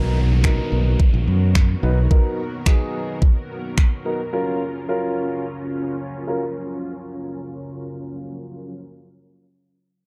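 A mellow, vintage baby grand piano, a full string-machine cello pad with sawtooth tone and ensemble chorus, a round, up-front fingered electric bass and an electronic downlifter open together under a filter sweep in this summery, upbeat dance-pop excerpt at 108 BPM in F# major, with sidechain pumping on the piano, pad and bass, a low-pass filter on the piano and strings, an overdriven, knocking kick drum with finger snaps arriving at 0.4 s, and the chords moving from Bmaj7 to F#maj7 at 4.3 s inside a dark, lightly reverberant mix.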